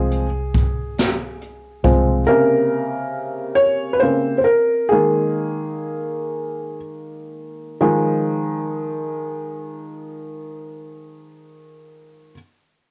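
A felt-muted upright piano with audible action noise opens this dramatic, aching six-eight pop ballad excerpt in F minor at 39-46 BPM, sounding from the start alongside a dark, round, foam-muted electric bass on a low C and a distant brushed drum kit with a high-tuned snare and punchy kick; both drop out by 2.2 seconds, leaving the intimate, cassette-tinged piano alone through Fm/C, Bbmadd9 and Ebsus4 as the tempo slows from 2.3 seconds until it settles on Fm7 at 7.8 seconds, all in a lightly reverberant home recording.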